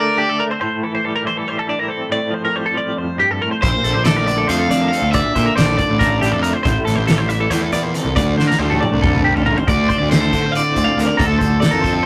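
Math rock and midwest emo in a restless, wistful 7/8: two twangy, compressed twelve-string electric guitars, one picking a tremolo-shimmered accompaniment and one spinning clean picked arpeggios, run through the whole excerpt beneath a crunchy, bright overdriven lead guitar that flickers briefly before returning with the fuzzed-out picked bass and the loose indie drum kit at 3.6 seconds, its fat snare and punchy kick pumping through a drum fill from 8.4 seconds, all wrapped in a rough rehearsal-room sound with tube saturation and a wet small-room reverb.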